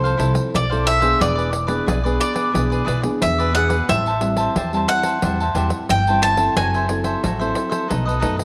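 Lively and joyful, this short cut from a longer samba and choro piece in straight 4/4 features an up-front bowl-back mandolin carrying the picked, double-string melody as a solo until 7.5 s. A crisp cavaquinho and a dark, thumb-plucked classical nylon-string guitar accompany it, while a woody pizzicato upright bass sits up front and a jingly, close and dry pandeiro enters at 0.1 s. The harmony moves from Fmaj7 through E7, Am7 and F#m7b5 to B7, heard in a moderate plate reverb.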